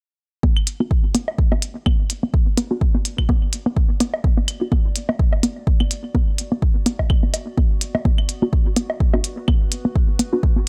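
A deep, up-front electronic kick and a hollow, bouncy, detuned square-wave pluck riff with sidechain pumping and analog delay open this cool, quirky minimal techno piece in B minor at 126 BPM with a light 16th-note swing, soon joined by clicky hi-hats, tape-warm claves and woodblock with tape echo, muted sawtooth dub chord stabs with analog chorus that drop out at 4.7 s and return at 8.4 s, and a warbling, nostalgic lo-fi pad that fades in softly in the background with its own reverb and pumping, the whole captured as a dry, gritty hardware recording.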